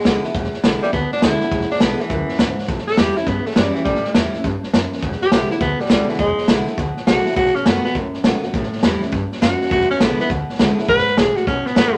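A moderate studio reverb gives this rockabilly clip a natural room feel, with the vintage drum kit and raspy tenor saxophone sitting up front. At a brisk 205 BPM in 4/4 with a swung eighth-note feel, the music is rollicking and rowdy, moving through E7, A7 and B7 chords in E mixolydian. The tenor saxophone carries the solo melody with a gritty, raspy edge over a smooth top, adding light vibrato and scooped notes in a pop style. Beneath it, a picked steel-string acoustic guitar picks out bright, full-bodied accompaniment, with finger squeak audible on the strings. The drums bring a punchy kick, a medium-tuned snare and hi-hat with a rolled-off top, while a woody, thumpy pizzicato upright bass on gut strings adds a dark low end from 0.1 to 11.9 seconds. The clip is cut from a longer piece.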